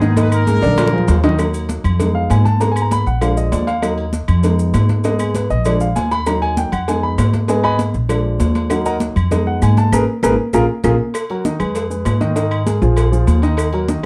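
A dark, warm production with moderate studio reverb frames this driving, danceable salsa cut from a longer piece. A tight, clear horn section with plate reverb states the melody only until 1.2 s, while a mellow grand piano with audible action noise and short sustain sits up front and takes a solo from 1.4 to 11.1 s, over a thumpy, gut-strung pizzicato upright bass. Around them, high-tuned congas struck with hard hands, a small-room cowbell, grainy maracas, woody claves and ringing agogo bells and timbales keep the groove, with drum fills at the opening and near the end, the later one joined by a band accent for added lift.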